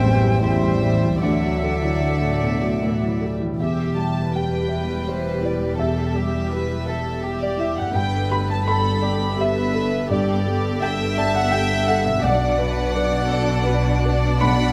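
Cinematic and rubato in 3/4, this E minor excerpt moves at roughly 74-86 BPM with a moving, longing mood. In the opening 3.2 seconds a very quiet French horn carries the melody with a light vibrato, joined by an airy, bright flute, a vintage clarinet in the background and a distant, roomy horn section holding sustained chords. Throughout, a violin section sings the melody on sul tasto bows, floating and pure, while a second violin line sits beneath it. A felt-muted upright piano, soft and intimate, anchors the accompaniment alongside a dark, woody viola section with lush vibrato, and a thumb-plucked concert harp rings out mellow arpeggios. Bowed double basses and a cello section in the background supply a dark, close low end as the harmony passes from Am7 and Dadd9 through Em, Gadd9 and Bm, with light reverb and detailed close microphones keeping the sound present.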